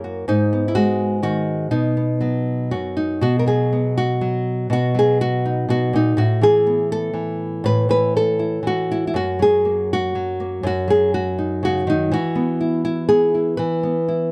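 Folk fingerstyle in a nostalgic mood, this short cut from a longer piece moves in a rubato 3/4 around 122 BPM in B major, played by a lone fingerpicked nylon-string guitar heard from 0.0 to 14.3 s. The guitar sounds woody and small with the dull character of old strings, sitting up front in a dark, warm production with light reverb. After a brief opening passage, the harmony drifts from G#m7 and B through Asus2 and F#6 before settling on E.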